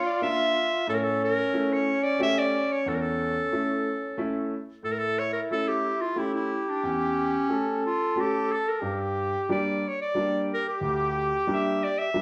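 A bright, up-front clarinet with tape echo carries the melody and takes a solo from 4.9 s in this bittersweet, soulful klezmer excerpt at 91 BPM in 3/4 and A phrygian dominant, alongside a classical-style trombone with light vibrato on the second line and a woody upright piano accompanying over Bb, A and Gm chords, all set in a moderate studio reverb.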